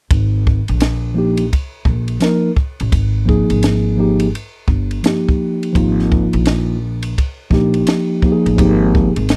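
A dry, close recording with the feel of a 1970s studio and a touch of light reverb opens this relaxed, smooth jazz-hop fragment, cut from a longer piece. At 85 BPM in 4/4 with a lazy sixteenth-note swing, a compact cocktail drum kit starts at 0.1 seconds, pairing a punchy kick and a high-tuned snare with hi-hat and dark ride cymbal, all sitting up front. An upright bass enters at the same moment, plucked pizzicato on gut strings for a woody, thumpy tone that stays low in its register. From 1.1 seconds a mellow tine electric piano adds clean, direct accompaniment in the middle range, the most prominent voice in the blend. The whole passage rests on a single Absus2 chord, giving it an unresolved, relaxed calm.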